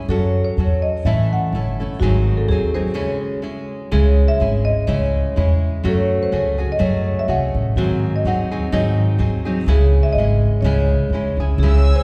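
In a swung 2/4 at 125 BPM, this passionate, dramatic mariachi folk excerpt in C# harmonic minor sets up-front fingerpicked nylon-string guitar with audible finger squeak and a thumpy, woody pizzicato upright bass under a round, mellow soft-mallet marimba melody, moving from F#m through G#7 to C#m with a break at 3.0 seconds, all set back in a wet concert hall reverb before a dark, bowed violin section enters at 11.6 seconds.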